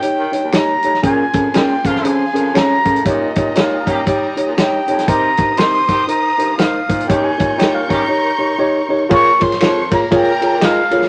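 A breathy, close-miked concert flute carries the melody from the first moment of this uptempo 1960s-style soul excerpt, joined at once by a worn, slightly out-of-tune tine electric piano and a warm, mid-forward soul drum kit with a medium-tuned snare, a tight kick and a rolled-off top, all three up front. The swung feel is driving and urgent, with a baritone saxophone supplying the bass line from 0.2 s, its vintage, jazz-style tone soft-attacked, scooped and sitting in the background with vibrato. A very quiet finger snap adds a human touch from a live room. At 1.0 s a clear horn section in octave doubling and a lush, distant string section with portamento enter as second lines; the horns stop at 8.0 s while the strings carry on. Everything sits in a moderate studio reverb under a layer of vinyl crackle, as the harmony moves through minor-seventh and dominant-seventh chords.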